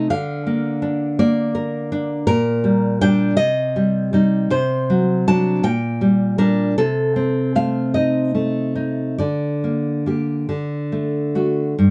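Romantic solo classical guitar music in G minor, this intimate, passionate excerpt moves in a slow, rubato 6/8 at roughly 45-57 BPM, its harmony passing from Bb/D through Cm, D7/C and Adim/C before settling on Gm/D and a closing D. The fingerpicked nylon-string guitar spans G2 to A5 with a warm, full-bodied, deep tone and the fresh sound of new strings. Close, detailed microphones keep the instrument up front, with a touch of light reverb around it.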